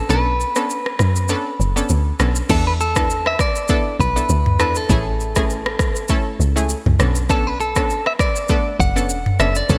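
Afrobeats at 100 BPM in 4/4 with a lightly swung sixteenth-note feel, this smooth, mellow excerpt sits in B dorian, cut from a longer piece. A clean, picked electric guitar with delay carries the melody between A4 and F#5, its compressed tone sitting alongside a round, warbling analog pluck with chorus that fills in the accompaniment from A3 to A4. Underneath, a woody log drum bass with a dark, punchy attack and a noise layer sits up front, ranging from E1 to F#2. The electronic afro-pop drum kit, treated with gated reverb, brings crash cymbal, rim click, shaker and toms, with its deep kick held back until 2.5 seconds, when the groove opens into a new section. The chords move from Bm9 through E7sus4 and Amaj7 before returning to Bm9 at 7.0 seconds, all framed by light reverb and a bright 1980s-style digital production.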